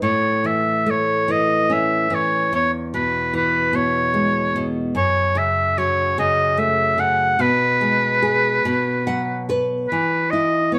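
Tender and innocent, this children's lullaby drifts at a rubato 49 BPM in 6/8 in E major, with a bright classical oboe singing the solo melody up front with light vibrato while a fingerpicked nylon-string guitar accompanies in a classical manner through A, E, F#m and G#m/B. The guitar steps forward with a short fill from 8.6 to 9.9 seconds before settling on E5. The duo plays together live in one room with moderate studio reverb, and this passage is cut from a longer piece.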